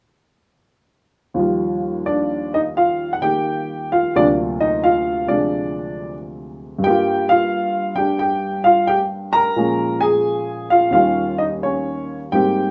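Swinging and relaxed, this short solo jazz passage features a woody, natural upright piano placed up front, playing from 1.3 to 12.7 seconds with a loose, rubato swing feel through harmonies such as Ebmaj9, D7alt, Gm7, Bbm7 and Eb7, all carried by a roomy studio reverb that suggests a live performance.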